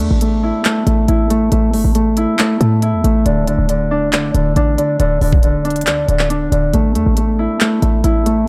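Hip hop trap at 138 BPM in a half-time feel, this dark, menacing excerpt cut from a longer piece runs about 8.5 seconds in a dry, gritty hardware recording with digital ambience. A thumb-plucked Celtic harp, ringing and up front with tape echo, plays arpeggios across chords of A5, D5 at 3.3 seconds and A5 again at 6.7 seconds. Beneath it sits a short, punchy 808-style bass with a sine tone, noise layer and fast attack, while an electronic trap kit adds a knocking kick, crisp hi-hats and handclaps.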